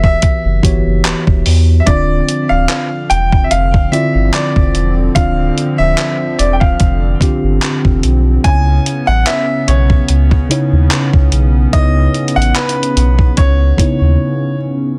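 Contemporary R&B at a slow 73 BPM in 4/4, with a light swing on the sixteenths, this short cut from a longer piece carries a longing, late-night mood over chords moving from Emadd9 to Dm9 at 1.9 seconds and C#m9 at 8.4 seconds. A clear, natural grand piano carries the melody in a high register, touched by digital delay, while a mellow tine electric piano, worn and slightly out of tune, supplies the accompaniment beneath it. Up front, a deep, full sub bass with an octave layer holds the low end with a fast attack and sustained notes. A gated 80s digital drum machine with a thumpy kick, hi-hat and handclaps brings gated reverb and vintage 12-bit sampler grit, sounding tape-warm and re-recorded in a small room. From 1.9 seconds a hollow, flute-like soft pad with chorus sustains chords in the middle range. The drums drop away at 14.0 seconds and the bass at 14.2 seconds, opening a brief break in which the piano melody lingers until 14.6 seconds while the pad and electric piano ring out to the end. 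The mix is dry and dense, with a heavily limited modern master.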